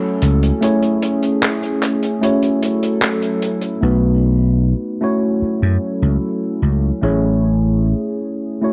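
Dark, cassette-tinged production gives this short cut from a longer vaporwave piece a hazy, woozy, melancholic air, set in a small, lightly reverberant room. At a straight 75 BPM in 4/4 and F# dorian, a worn, slightly out-of-tune tine electric piano sits up front, its clean, direct chords softened by a subtle chorus and analog delay. Beneath it, a warbling, tape-like pad holds long, detuned chords with a slow attack and long release, its mellow, lo-fi tone roughened by 12-bit sampler grit, chorus and built-in reverb. A growly, punchy electric slap bass enters at 0.2 seconds alongside a dry, dusky soul drum kit of handclaps and filtered hi-hat, whose rolled-off top keeps it smooth and recessed until the drums drop away at 3.8 seconds. The harmony drifts between F#m7 and Amaj7, moving to B7 as the second section begins, before settling back on F#m7 and Amaj7 as the bass, keys and pad carry the nostalgic haze forward.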